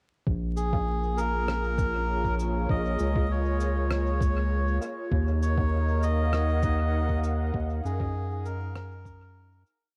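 Meditative and hazy, this short ambient dub piece in Bb minor drifts at 99 BPM over a slowly shifting Bbm7 to Ebm7 progression (the change arriving at 5.1 s), where a warbling, detuned analog pad with chorus and a deep, round, up-front bass of long gliding notes sit beneath a muffled, thumpy, pitched-down kick, a reedy, breathy melodica roaming freely through dub echo, sparse, dry cabasa and rim clicks trailing their own echoes, and very quiet, muted chord stabs touched with phaser, all caught in a home cassette recording with small-room ambience and vinyl crackle before a fade-out from 6.7 s to the close.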